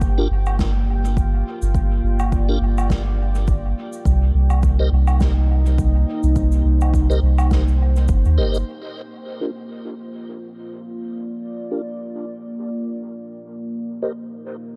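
A deep, meditative ambient dub excerpt in G minor at 104 BPM opens on a moody, sawtooth-edged pad of slow-attack chords with chorus and its own reverb, over a round, up-front sub bass, a tape-warm electronic kick sitting in the background, and low-pass filtered cabasa, woodblock and fat snare trailing dub echo. From 0.2 seconds a lightly overdriven tonewheel organ adds piping, scooped stabs with key click, chorus vibrato, a slow rotary speaker and its own dub echo, as the harmony moves between Gm7 and Cm7. The kick drops out at about 8.2 seconds and the bass and remaining percussion at about 8.6 seconds, leaving the pad and organ to carry the dark, close-sounding second half.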